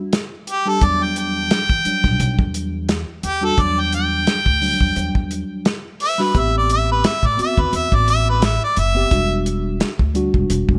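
A bright, overdriven harmonica leads this brooding, mournful soul blues excerpt in E minor at 87 BPM, playing a close-miked, jazz-style solo up front from 0.5 to 9.5 seconds, with light vibrato, soft attacks and scooped notes. Beneath it, a dark, smooth acoustic drum kit with a medium-tuned snare and a tight kick sits forward in a small room, and a woody pizzicato upright bass with steel strings enters at 0.8 seconds. A mellow, clean tine electric piano accompanies the straight-eighth groove on Em9 moving to Am9 and back, all under a light reverb.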